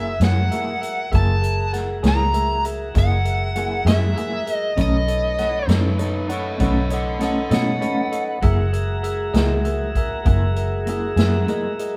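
A live, one-room sound with moderate studio reverb frames this gritty, swaggering slow blues in 12/8 at 66 BPM in F# mixolydian, where a biting overdriven lead guitar carries the melody until 5.7 s and an overdriven slide guitar adds a second line from 5.7 to 8.7 s, over a bell-like tine electric piano, a slightly broken-up guitar through a small old amp with tremolo, smooth tonewheel organ chords on a slow rotary speaker, a round, foam-muted vintage bass up front and a swinging big-band kit with a boomy kick, as the chords move from F#9 to B9 and back.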